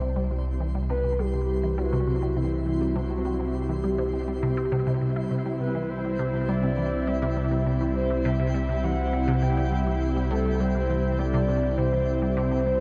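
A straight 4/4 pulse at 102 BPM carries this expansive, cosmic stretch of sequencer-driven ambient space music in C lydian, tuned to A4 = 436 Hz and resting on a C chord, cut from a longer piece. A juicy, squelchy blip pluck with phaser and analog delay runs its riff over a deep, round sine sub bass, while a thick, warbling unison pad holds sustained chords up front. A soft, octave-layered lead sings its melody through chorus, phaser and shimmer reverb, and a twinkling granular texture fades in over the full 12.8 seconds, all inside a huge, dark reverb space.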